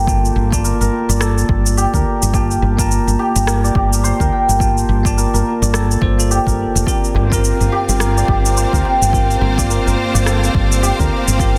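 A swung 106 BPM groove in 4/4 carries this hypnotic, meditative organic downtempo piece in G minor, built on a punchy, overdriven electronic kick and a tape-warm electronic cabasa and rim click with softly clipped snare hits, under a dark, round fretless bass that pumps against the kick. A shimmering, hammered santur rings out arpeggios while a bell-like tine electric piano adds clean, tape-echoed accompaniment over a Gm9 chord. At 6.9 seconds a lush, bowed studio string section joins with vibrato-rich sustained chords, and from 7.1 seconds a very quiet, dry clay-shell darbuka adds hand percussion, all set in digital ambience with a dense, heavily limited modern master.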